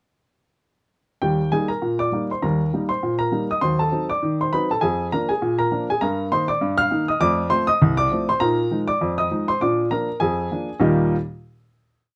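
Playful and lively, this short ragtime piece at 100 BPM in Eb major features a solo upright piano with a woody, intimate tone and audible action noise, playing the tune in octaves over a stride bass with a lilting swing from 1.2 seconds until it settles on a final Eb chord at 10.8 seconds, captured up front by close, detailed microphones with light reverb.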